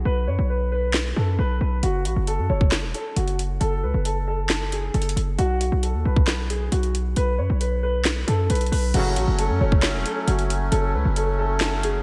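Dark and hard-hitting, this half-time trap excerpt in F# minor moves at 135 BPM, opening on a break where a punchy, heavy 808-style bass with a fast attack and a noise layer sits up front beneath a mellow concert grand piano. The piano carries the melody in a narrow upper-middle range, its natural tone softened by lush chorus, a low-pass filter and delay, so it floats behind the low end. From 0.9 seconds an electronic trap kit arrives with a hard-clipped kick, a sharp snare, metallic hats, handclaps and a crash, all roughened by vintage 12-bit sampler grit. The harmony moves from B5 to F#m, drops to a chordless passage at 5.4 seconds, then settles back on F#m. At 8.9 seconds a reedy, sweet accordion with light tremolo tuning enters on sustained chords, while a brief classical-style brass stab sounds in the background. The whole mix is soaked in a dreamy hall reverb that lends the heavy low end a haunting depth.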